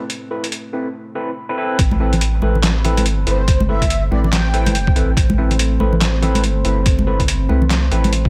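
Brooding and dark, this deep dubstep excerpt in A minor moves at 142 BPM with a swung, half-time feel, opening on a moody, detuned ambient pad in the background, barky, overdriven electric piano stabs through a phaser and dub echo, and gritty, pitched-down trip hop drums with handclaps, hi-hat and snare. At the drop at 1.8 s, a round, up-front dub sub bass and a thumpy, overdriven electronic kick arrive, joined by close, dry congas in the background. Between 3.3 and 4.9 s, a breathy, flute-like synth lead with vibrato and dub echo floats above in a light reverb.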